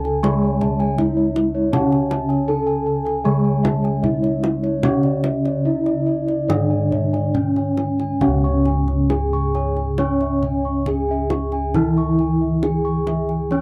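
Hypnotic and stately, this cut from a longer Javanese gamelan piece moves at 68-80 BPM in a straight 4/4, set in a C# pelog tuning. A bronze metallophone carries the melody with padded disc mallets, its paired tuning producing shimmering beats over a dark, smooth tone. A lower metallophone, mellow and soft, supplies the accompaniment. Above them, a metallophone struck with a wooden mallet plays airy, ringing arpeggios alongside a set of round, beating bossed gongs. Deeper bossed gongs, dark and up front, anchor the bass, while a tight, compressed kendang with hard hands joins at 0.1 s. The dry, close sound recalls a 1970s studio, and the music shifts into a new section at 8.2 s.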